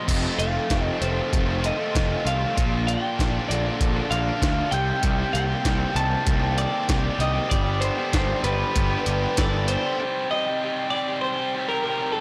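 Restless, moody indie rock in C dorian at 97 BPM opens with a bright, twangy twelve-string electric guitar carrying the melody through tape echo, over a dark, biting overdriven guitar riff and a distorted fuzz guitar riff colored by analog chorus. A punchy, up-front fuzz bass and a gritty, pitched-up jungle sampler-style kit join almost at once, the kit's thumpy kick and high-tuned snare sitting with crash and hi-hat in a compressed, tape-warm sound re-recorded in a small room. From 4.1 seconds a mellow, bell-like glockenspiel played with rubber mallets rings softly in the background as a second line. The harmony moves through F7, Bb, Cm7 and Gadd9 before settling on Cm at 10.0 seconds, where the fuzz guitar, bass, drums and glockenspiel have dropped out, leaving the twelve-string and overdriven guitar to close this cut from a longer piece. The mix is dry and blown-out, with a heavily overdriven, saturated character throughout.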